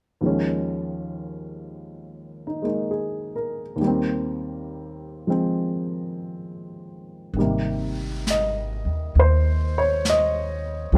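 Jazz ballad at 67 BPM in Ab major with a gentle swing, romantic and tender, where a dark, mellow baby grand piano sits up front and intimate with audible action noise, playing alone over Eb7sus4 and Abmaj7/Eb until a thumpy, woody pizzicato upright bass enters at 7.3 seconds and a distant, roomy brushed drum kit on snare and hi-hat joins at 7.4 seconds as the harmony settles on Abmaj9, all in a dry sound cut from a longer piece.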